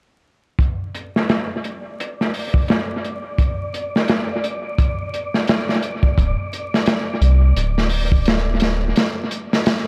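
Trip hop at 86 BPM with a swung 16th-note feel, smoky and dark, cut from a longer piece. A crunchy, gritty breakbeat kit of kick, snare and hi-hat sits up front from 0.6 seconds, its saturated tone rolled off on top through low-pass filtering and trailed by analog delay, while a breathy, wind-like tuned noise texture drifts in at 1.5 seconds with its own reverb. At 6.2 seconds a round, deep analog bass with a nasal edge arrives on a D chord and holds until 8.9 seconds, all set in an echo-heavy mix with light reverb and vinyl crackle.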